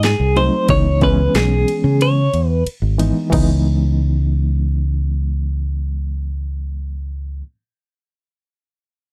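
A round, up-front fingered electric bass and a punchy, produced electronic drum kit with a huge snare open this brooding, soulful straight-eighth blues fragment, joined almost at once by a bright, twangy clean guitar with tremolo and a reedy, worn electric piano, also with tremolo and slightly out of tune. The harmony moves from G#7b9 to C#m7, and the guitar drops out at 2.6 seconds while the drums stop at 3.5 seconds. The dark bass and the piano carry on alone to 7.4 seconds in a dry, close 1970s-style studio sound.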